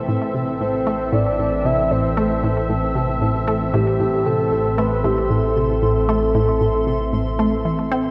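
Expansive and mysterious, this short ambient space-music piece moves at a straight 115 BPM in A minor, resting on a single A minor chord. A bright, up-front sweeping pad holds sustained chords while a juicy, squelchy blip pluck plays a riff through chorus and delay, and a pulsing, tempo-synced gated texture fades in above them. A round, dark octave-layered lead begins its melody at 0.6 seconds with vibrato, tremolo and a cassette-tape tint, and a mellow, warbling analog drone enters at 0.8 seconds, all set in a lush hall reverb.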